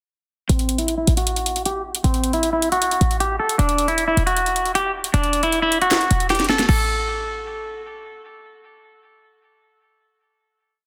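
A clean, hollow-bodied semi-hollow electric guitar leads this brooding, hard-hitting trap piece at 155 BPM in a half-time feel, playing a looping melody in A dorian that repeats like a sampled phrase, its fingered tone compressed and up front, treated with spring reverb and delay and shaped by a low-pass filter sweep from 0.5 to 6.7 seconds. Beneath it, a short 808-style bass delivers punchy, tight sine tones with a noise layer, a fast attack and long, decaying sub-bass notes that slide in pitch. The electronic trap drum kit bounces with sixteenth-note metallic hats, fast hi-hat rolls, a sharp snare layered with handclaps and crash cymbals, all sitting up front. The stretch from 0.5 to 6.7 seconds works as a breakdown over A5 and Esus2 harmony, with a drum fill closing it out before the kit stops at 6.8 seconds. A final note then rings on as the guitar ends at 7.8 seconds and the bass at 8.2 seconds, wrapped in light digital ambience and a dense, heavily limited modern master.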